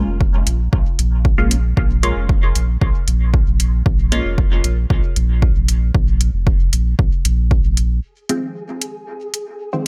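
Muted sawtooth-and-square dub chord stabs with a filter pluck open this hazy, nocturnal dub techno excerpt at 115 BPM, treated with phaser, dub echo and sidechain pumping over a deep, round sine sub bass with tube saturation, while a punchy overdriven kick and metallic overdriven hi-hats sit up front and a filter sweep shapes the stabs until 8.0 seconds, when the chords shift from Bbm7 to Fm7 and the bass stops, before a grainy, flickering, detuned granular texture on Ab4 enters at 8.5 seconds with its own reverb.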